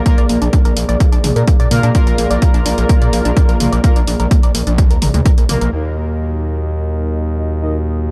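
Melodic techno with a dramatic, driving mood, this excerpt sets a dark analog pad, bold synth brass stabs and a tight, nasal sequenced arpeggio in the background over a Bb7 chord, all pumping with sidechain and treated with chorus. A punchy kick sits up front with an overdriven deep house kit of hi-hat and toms, and a gritty, aggressive synth bass with distortion and tube saturation drives underneath. By 5.7 seconds the kick, drums and arpeggio have dropped away as the harmony settles on Ebm and a filter sweep moves across the analog polysynth, while the pad, brass and bass carry on in a dark, warm ambience.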